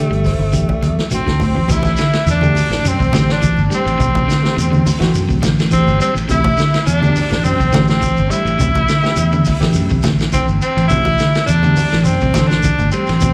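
Heard through a club PA with light reverb and small-room ambience, this hypnotic, defiant afrobeat excerpt moves at 104 BPM in A dorian over an Am7 chord. A bright tenor saxophone with vibrato, scooped notes and slapback echo carries the melody, and from 1.1 seconds a warm trumpet with the same echo adds a second line in the background, while a reedy, lightly overdriven electric piano opens with a fill and then accompanies. A slightly broken-up guitar picks arpeggios above a round fingered bass, a punchy vintage drum kit with dark cymbals, low-tuned ringing congas and a grainy shekere.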